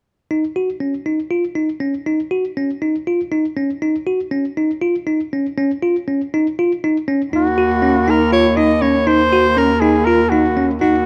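A breathy, whispered soprano saxophone carries the intimate, mellow, jazz-style melody from 7.4 seconds, shaded with vibrato, in this hypnotic, pensive excerpt of contemporary chamber music in 7/8 at 240 eighth-note beats per minute. Before it, a bell-like tine electric piano plays clean, bright arpeggios through its built-in speakers over a Dbadd9 chord from 0.3 seconds. As the harmony moves to Ebm7, a dark, veiled, bowed cello enters on a bass note with con sordino tone, soft attacks and portamento, while close, detailed microphones and light reverb keep every part up front.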